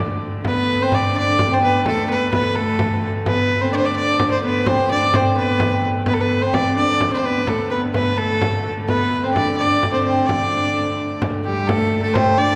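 A driving, mysterious medieval dance in 6/8 at 86 BPM, this short piece cut from a longer work opens with a clear, airy hurdy-gurdy drone, joined at 0.2 seconds by a deep, large frame drum played with soft hands and sounding close and dry. Up front, a nasal, gut-string fiddle carries the melody, while a dark, woody viola da gamba with light vibrato and a delicate, fingerpicked lute with double strings add second lines beneath it. The bowed strings and lute bloom in a reverberant church acoustic, with the hurdy-gurdy and lute sitting in the background.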